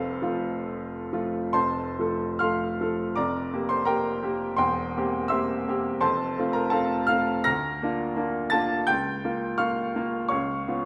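In a flexible 2/4 with rubato pulling the tempo between 65 and 87 BPM, this passionate romantic character piece for solo piano unfolds in F major, drifting from F through Gm7/F and C7/E before darkening toward Bbm/Db and Db7. The upright piano sits up front with a clear, woody, polished tone and long sustain, ranging from E1 to Bb6 across the full 10.9 seconds. A moderate recital hall reverb frames the playing in this fragment cut from a longer work.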